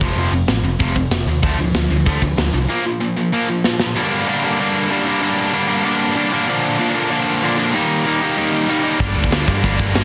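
A bright, double-tracked distorted guitar riff sits up front throughout this angry, urgent punk rock cut, driving a straight 190 BPM in G minor over chords that move from F5 and Dm to Bb5 before settling on Gm, Bb and Eb. A growly, punchy overdriven bass and a tight metal drum kit with a mid-forward, medium-tuned snare and a softly clipped kick play at the start; the bass drops out at 2.6 seconds, and the drums close on a fill before dropping out around 4.0 seconds to leave the guitar alone. Bass and drums come back in at 9.0 seconds, all under light reverb in a dense, heavily limited modern master.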